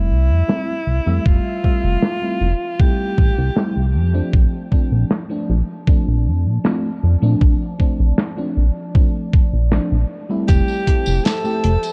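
Dreamy, nostalgic vaporwave at 78 BPM in F major, drifting from Fmaj7 to Bbmaj7, where a clear alto saxophone with vibrato and tape echo sings a brief jazz-style melody before returning at 10.5 seconds, over a mellow, round FM electric piano with phaser and cassette haze, a warbling detuned pad in the background, a glossy chorused synth bass up front, and a gritty 12-bit studio kit with low-pass filtered hats, snare and tambourine plus a thumpy sampler-style kick, all steeped in a dark, warm cassette-toned production.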